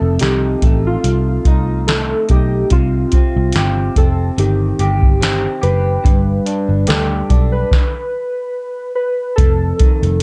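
Lightly reverberant and lo-fi, this lonely, mellow bedroom-pop fragment at 72 BPM with a gentle sixteenth-note swing sets nostalgic, detuned synth keys carrying the melody through tape echo over a bright, twangy, slightly broken-up electric guitar soaked in lush chorus and drifting pitch, a dark, round, foam-muted picked bass up front, and a soft vintage rhythm box with deep kick, crisp snare and metallic hats that enters at 0.2 seconds with 12-bit grit, before the groove halts at 7.7 seconds and resumes at 9.4 seconds.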